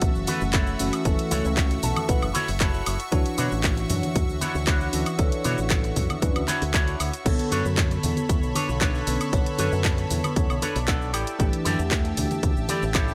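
A punchy, tape-warm electronic kick and a house kit of crash cymbal, handclaps, hi-hat, shaker and woodblock open this sensual, cosmic nu-disco excerpt at 116 BPM in B minor, together with a bell-like electric piano treated with phaser, sidechain pumping and dub echo, a lush detuned unison pad, and a fingered electric bass through an envelope filter, before a bright, twangy envelope-filtered guitar riff with chorus and dub echo and ringing background congas join at 0.3 seconds, while a clean electric guitar fill appears at 1.6, 6.2 and 10.4 seconds over chords moving from F#m7 through Dmaj9 and Bm9 to A7sus4 in a dry sound.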